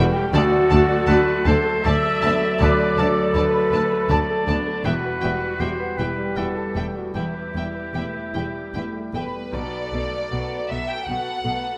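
Cinematic, sorrowful film-score excerpt in E minor at a rubato 74-82 BPM in 3/4, where veiled con sordino violins carry a longing melody over a second muted violin line, a clear vintage-toned solo oboe and a mellow, pure flute ensemble, with a bright, polished concert grand piano and lush, dark muted violas in accompaniment, dark French horns sustaining chords until 9.5 seconds, and soft-attack muted cellos and double basses holding the bass, all set in a moderate scoring-stage reverb as the harmony moves from D to Em to Bm7.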